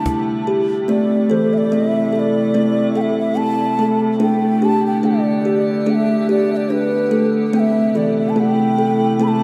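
A lightly swung 72 BPM pulse in 4/4 carries this gentle, meditative world piece in A minor, cut from a longer work: an up-front, woody kalimba rings out arpeggios, a breathy bamboo bansuri sings an expressive, vibrato-laden melody through shimmer reverb and delay, an icy, crystalline glass pad holds sustained chords that move from Am to G at 4.2 seconds, and a close, dry cajon sounds only between 0.1 and 0.8 seconds, all within a lush hall reverb and a dark production.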